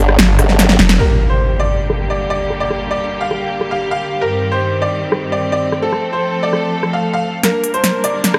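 Lightly reverberant and punchy, this menacing, chaotic heavy wobble dubstep excerpt at 149 BPM, in a half-time G minor feel, opens with clear, bowed symphonic strings holding low-pass-filtered chords and a brief burst of chorused formant-sweep wobble bass and snarling, detuned distorted saw bass, before an impact and riser at 1.0 seconds brings in a brilliant, worn grand piano melody trailed by dub echo over overdriven big-room dance drums with a punchy snare and crisp hats, closing on a drum fill from 7.4 seconds.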